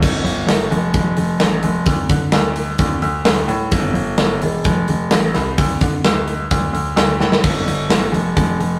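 A straight 4/4 groove anchors this heavy, aggressive hard rock fragment, where a tight, up-front metal drum kit with a medium-tuned snare, crash cymbal, hi-hat and kick in a big acoustic room pairs with a clear, worn grand piano carrying the low bass line, and a drum fill arrives at 7.2 seconds, all in a rough rehearsal-room recording with moderate studio reverb.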